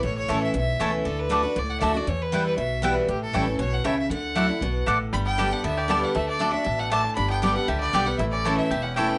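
A clear, focused fiddle with light vibrato leads the melody up front in this lively, rustic bluegrass excerpt, moving at a brisk 235 BPM in D major. A full-bodied picked dreadnought guitar, also up front, drives the accompaniment, while a woody mandolin adds double-string stabs and a thumpy pizzicato upright bass holds down the low end. At 5.1 seconds a bright, twangy banjo joins with a percussive melodic line. A light reverb surrounds the mix, and the top end is gently softened.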